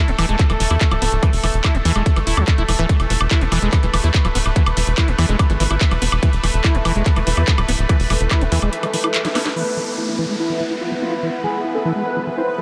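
An up-front, tight electronic kick drives this intense psychedelic trance piece at 144 BPM in E major, alongside a dark, punchy sawtooth sequencer bass, a squelchy, resonant acid bass riff with chorus, tape echo and sidechain pumping, a bubbling stepped-filter texture of sustained, pumping chords, and a drum and bass kit of cracking snare, metallic hats, handclaps and woodblock. After a drum fill, the kick, kit and sequencer bass have dropped away, and at 9.6 seconds a thick, detuned unison lead with phaser, vibrato and tape echo takes the melody over an electronic downlifter, joined at 10.4 seconds by a soft, breathy, warbling pad in the background. The dreamy mix is soaked in a huge ambient reverb.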